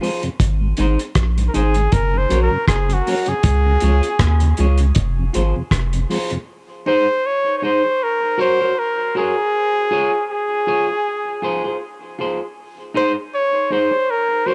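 A clear, punchy flugelhorn carries the melody with vibrato and scooped notes through tape echo from 1.5 seconds in this uplifting roots reggae fragment, set over a clean picked electric guitar with its own tape echo, a mellow, dark tonewheel organ with chorus vibrato and slow rotary speaker, a round, deep sine sub bass, and a cloth-damped, muffled, gritty drum kit of tight kick, hi-hat and rim click, all in a light small-room ambience cycling through Ab, Gb, Db and Fm, until the organ, bass and drums fall away by 6.5 seconds to leave the horn and guitar.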